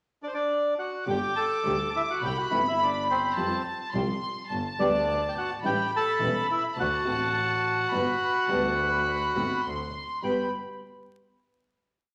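A single bowed double bass drives the rhythm with uneven groups of three and two eighths, while the phrasing moves with a rubato feel in this nostalgic, elegant tango in 4/4. A reedy, dark bandoneon sits up front and begins alone at 0.2 s, opening with a pickup and then shaping a motif-based melody in sentence-like phrases, partly doubled in octaves. From 1.0 s a studio violin section, up front and warm, adds a counter-melody with a smooth top and an earthy body, and both bowed string parts share a light vibrato. A classical nylon-string guitar plays short, thumb-plucked tango chords underneath. The close, clear bass has a biting, nasal edge and an airy bow. A large, wet studio reverb and a layer of vinyl crackle give the whole piece a vintage glow before it settles on a final Gmaj7 chord at 10.2 s.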